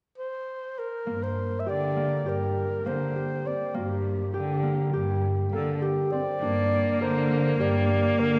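A breathy, whispered clarinet carries the melody in an intimate, jazz-tinged subtone with scooped notes and vibrato, opening alone at 0.2 s in this hypnotic, restless piece of contemporary chamber music in G minor, set in 9/8 at 202 BPM in eighths. At 1.1 s a ringing, thumb-plucked concert harp adds arpeggios, while a dark, bowed cello anchors the bass with expressive portamento. A smooth, distant-sounding viola joins on a second line at 6.4 s, and the whole short passage, cut from a longer work, sits in a wet church reverb.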